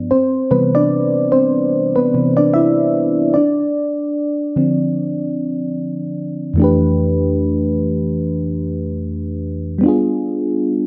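Introspective and late-night, this slow R&B excerpt at 74 BPM sways with a gentle swing as a lone mellow FM electric piano plays throughout, its round, warbling vintage tone carrying a chorus shimmer, a faint noise layer and fast-attack notes that decay softly, sitting up front in the mix. The chords move from Cmaj9 to Dm7 before a new section at 6.6 seconds brings Fmaj9 and a closing G7b9. A moderate echo chamber reverb and a dark, warm production frame the piano.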